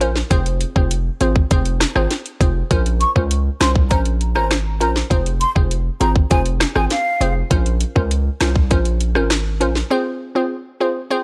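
Bouncy and sultry, this short dancehall excerpt rides a straight 4/4 groove on an electronic island pop drum kit with a tight kick, sharp snare and metallic hats, all coloured by vintage 12-bit sampler grit. Up front sits a hard-hitting 808-style bass, punchy and heavy, with a fast attack and a noise layer over its sine tone. A glassy wavetable pluck carries the accompaniment; it is crystalline, slightly nasal and detuned, and treated with chorus, a filter sweep and sidechain pumping as the harmony moves between Fm and Bbmadd9. At 3.0 seconds a breathy, hollow jazz flute enters in a high register with vibrato, a soft attack and digital delay, then drops out at 7.3 seconds. The bass and drums stop just before 9.9 seconds, leaving the pluck alone for a brief break, and digital ambience surrounds the whole track.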